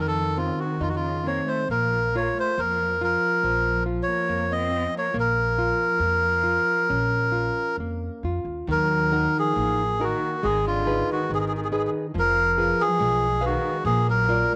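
A reedy, breathy melodica sits up front with the melody of this mournful fado-style ballad, moving in a free rubato over dark, fingerpicked classical nylon-string guitar and thumpy pizzicato upright bass with woody gut strings. A single bowed cello plays a distant second line in the background, expressive with vibrato and portamento; the guitar and cello carry a cassette tape coloring, the bass a transformer saturation, and the whole sits in the ambience of a small room, like a home recording. At 8.7 s the harmony shifts into a new minor key, deepening the longing before this fragment of a longer piece ends at 14.6 s.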